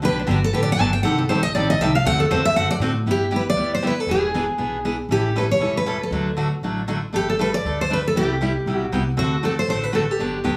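In a moderately reverberant studio, this playful, charming jazz manouche clip swings at 236 BPM in G major, with a full-bodied, up-front dreadnought steel-string guitar soloing in plate reverb through the first 3.1 seconds and then carrying the melody to the end, while a second picked steel-string guitar, flecked with finger squeak, picks out accompaniment over a woody, dark pizzicato upright bass as the chords move from Gmaj7 through E7 and A7 to a closing D7.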